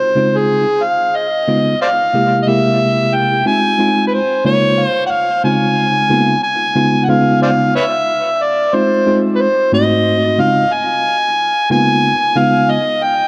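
An echo-heavy mix with vinyl crackle and a light small-room reverb frames this cool, smooth hip hop excerpt, where a gritty, overdriven harmonica plays an up-front jazz-style solo full of tongue slaps and scooped notes over a worn, slightly out-of-tune tine electric piano whose chords and fill at 4.1 seconds both carry dub echo.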